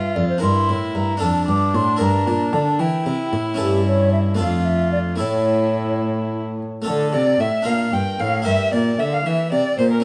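A grave, solemn baroque-style sonata movement in 6/8 opens with all four players sounding together: a concert flute carrying the melody over a violin second line, harpsichord accompaniment and a cello bass. The flute is airy and hollow, with a soft attack and vibrato, and it sits at the same level as the cello. A single bowed violin, expressive and somewhat distant, adds vibrato and portamento to its supporting line. The harpsichord, a single set of strings in the French style, gives a round, plucked continuo, while the lone cello, placed up front, supplies a rich, smooth and even bass with its own vibrato. The opening passage is restated from 6.9 s as the chords move through G minor and D minor harmonies, and the whole ensemble is held in a moderate stone room reverb, in what is cut from a longer piece.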